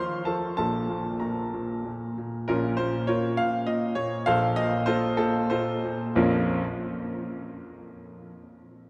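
Elegant and dramatic, this brief cut from a longer classical-period piano sonatina in Bb minor unfolds in a flexible, rubato 3/4 at 88-102 BPM, with a clear, present baby grand piano playing solo and up front from 0.0 to 6.6 seconds across a span from Bb1 to C6, its lines ringing into a vast, echoing cathedral reverb that lingers for 5.6 seconds as the harmony moves from F through Bbm and F/Bb before settling back on Bbm at 6.2 seconds.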